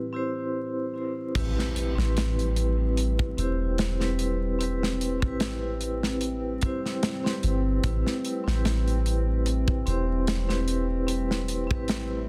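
Dark, cinematic trip hop at 74 BPM in A minor, cut from a longer piece, opens on an Am7 with an up-front, metallic vibraphone ringing through tremolo and tape echo over a warbling, nostalgic pad with chorus and 12-bit sampler grit, both under a filter sweep, before a very quiet electronic impact, a deep, round 808-style bass and a gritty small-room drum kit with tight kick, snare, hi-hat and crash arrive at 1.4 seconds, all wrapped in vinyl crackle and a dense, heavily limited master.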